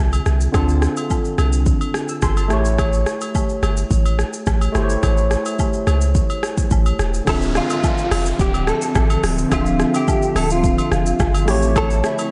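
A barky, lightly overdriven tine electric piano and a deep, punchy sine sub bass open this mellow, hypnotic afrobeats excerpt in D minor at 107 BPM, joined almost at once by a layered deep house kit of deep kick, smooth hats, rim click and shaker alongside close, dry agogo bells and woodblock; at 7.3 seconds a bright, scooped clean electric guitar takes the melody through chorus and diffuse delay as a background downlifter falls away, and an ethereal, detuned pad with phaser rises behind them at 8.2 seconds, all floating in a dreamy hall-reverb haze over Dm9 and A7.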